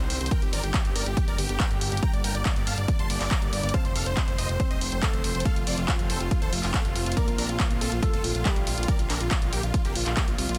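Uplifting trance at 140 BPM, this bittersweet, euphoric drop excerpt centres on a huge, bright, detuned supersaw lead carrying the melody with sidechain pumping and digital delay over a shimmering, ethereal pad of sustained chords moving through Gm, F and Bbadd9. A fat, saturated sawtooth bass pumps beneath, alongside an overdriven, up-front electronic kick and a punchy analog drum machine of handclaps and hi-hat re-recorded in a large room. At 3.7 s a soft, felt-muted upright piano with audible action noise and tape echo adds a mellow second line in the background, all within a dense, heavily limited modern master with little reverb.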